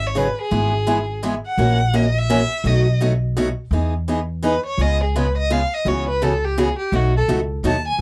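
Charming and playful, this short cut from a longer piece of jazz manouche swings along in 3/4 at 168 BPM in E major, with a rich, bowed violin carrying the melody as a solo through the whole span, its vibrato and portamento making it sound expressive. Beneath it, a woody, thumpy pizzicato upright bass on gut strings anchors the low end, while a bright, boxy parlour-style steel-string guitar with fresh strings adds picked accompaniment from 0.1 s, complete with audible finger squeak. The sound is close and dry with little reverb, and the changes move through colourful seventh chords such as G#7sus4, Emaj7 and B9.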